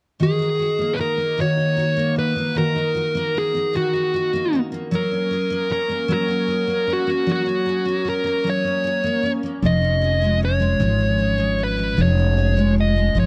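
Dramatic and aching, this excerpt from a longer pop piece moves in a slow, straight 6/8 sway over a dark, warm production with a light small-room reverb. A dark, smooth, overdriven electric lead guitar carries the melody up front, while a double-tracked, full-bodied jumbo acoustic guitar picks out the accompaniment through Ebm and Gbadd9 chords. At 9.6 seconds, as the harmony turns to Db/F, a woody, growly pizzicato upright bass enters prominently beneath them.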